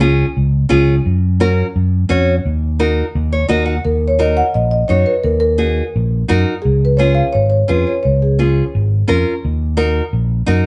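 A marimba played with soft mallets carries the melody, its rosewood bars sounding woody, mellow and round, close-miked and dry, as it enters at 3.8 seconds and sings until 9.2 seconds. This short cut from a longer cumbia piece moves at a driving 172 BPM in straight 4/4 in E-flat minor, with a passionate mood and tuning set slightly low at A4 = 435 Hz. Underneath, a fingered electric bass sits up front with a punchy, amped tone, holding the low end from the start. A small-sounding nylon-string guitar, fingerpicked on fresh strings, plays the accompaniment throughout and adds a brief fill at 3.1 seconds, just before the marimba arrives. The harmony moves from D-flat to G-flat and settles on E-flat minor, and moderate studio reverb places the ensemble a little back in the room with a soft-topped sound.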